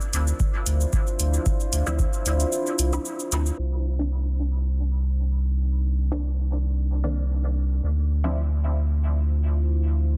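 Dub techno in a meditative, nocturnal mood, where a moody, warbling pad holds chorused sustained chords and a round sine sub bass pumps beneath it, while an overdriven analog kick and a shaker with metallic hi-hat sound only in the opening seconds (the kick stops at 2.1 s), a muted, detuned filtered chord stab with phaser and dub echo enters at 1.9 s, and a filter sweep on the pad from 3.6 s shapes a dense, heavily limited, low-passed mix.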